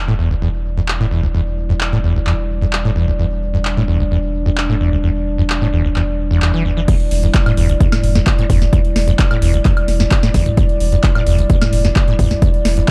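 A squelchy, resonant sawtooth acid bass riff with overdrive, lush chorus and digital delay sits up front in this gritty, trippy acid house excerpt, pumping over a thick triangle sub bass and a moody, nasal, detuned pad holding an Em7 chord, while a booming analog drum machine with crisp snare, metallic hats, handclaps, toms, woodblock and crash enters at 0.9 s, before a punchy, tape-warm kick drops in at 6.9 s in a dark, dry mix.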